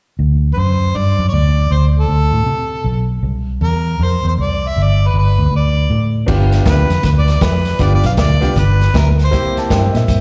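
An overdriven harmonica with light vibrato, scooped notes, plate reverb and slapback echo leads this swaggering, gritty electric blues shuffle over a round, foam-muted fingered bass, with a saturated breakbeat drum kit and an intimate baby grand piano arriving at 6.3 seconds and a dark, woody upright piano adding a brief second line at 9.6 seconds, captured as a live gig through the venue's PA in a recital-hall space.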